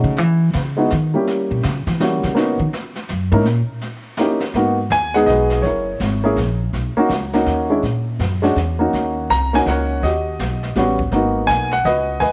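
A swinging 3/4 jazz waltz at 164 BPM in G# minor, this late-night, moody piano trio excerpt features a woody, thumpy pizzicato upright bass solo over the first 4.5 seconds, alongside a distant, roomy brushed kit with a boomy kick and a dark, mellow baby grand carrying the melody up front with audible action noise, through chords such as Emaj7(no3), F#7b9, Bmaj9 and D#aug in light reverb.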